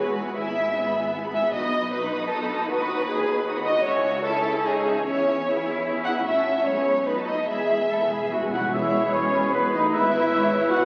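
In a rubato 3/4 at 142-158 BPM, this dramatic, restless classical excerpt in E major sets lush, vibrato-rich strings: one violin section carries an expressive melody while a second, up-front violin line, a sonorous viola section, a smooth cello section and a focused, distant double bass section fill out the harmony from E/G# through C#m to a B7 cadence. A timpani fill in the background at 7.5 seconds leads into the return of the opening material at 8.7 seconds. Between 8.5 and 8.8 seconds a clear oboe, a bright clarinet, a very quiet bassoon, an airy, hollow flute and a dark, tight French horn section join on supporting lines and sustained chords. The whole sits in a wet scoring-stage reverb under the crackle of a very old 78 rpm record.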